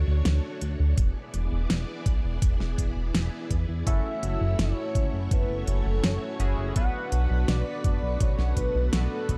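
Synthwave in F# minor at 83 BPM, this moody, driving excerpt from a longer piece moves through Dmaj7, E7, F#m7 and Bm7 in a straight 4/4 feel. A lush, vintage string machine holds sustained ensemble chords with a soft attack and long release, pumping against the sidechain beneath a glossy, nasal chorused synth bass that sits up front from the start. A pop drum kit with a fat snare and crisp hats enters at 0.3 seconds, and a knocking, tape-warm electronic kick joins at 1.0 seconds, both carrying studio reverb. At 3.9 seconds a thick, detuned unison lead takes the melody with vibrato, subtle chorus and delay, while a retro chorused polysynth adds stabs with a filter sweep. The production is dark and warm, with little reverb overall.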